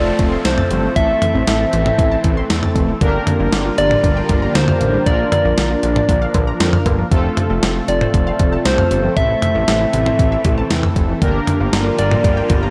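A thumpy, up-front 12-bit drum machine with kick, snare, hi-hat, toms and cowbell drives this wistful, nostalgic synth-pop excerpt, where a round, keys-like FM lead with vibrato carries the melody over bold, warbling analog brass, a fat detuned sawtooth bass, a lush phased unison pad and background arpeggios from a full-bodied analog pluck, while a very quiet downlifter sounds only in the first 3.0 seconds, all set in a lightly reverberant space.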